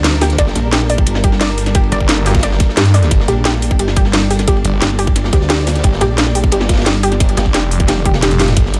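This dark, aggressive drum and bass excerpt opens on a drop, with a heavy pulsing wobble bass and a cracking, metallic-hatted electronic drum kit up front, a gritty breakbeat kit with dark cymbals in the background, and a tense, swarming granular drone that pumps against the beat. A warbly, lo-fi pluck arpeggio with chorus and delay enters at 0.2 s, and at 0.4 s a tight electronic kick and a snarling, distorted sawtooth bass with a moving notch join. The wobble bass stops at 7.4 s, just before a drum fill carries the mechanical groove to the end of the section.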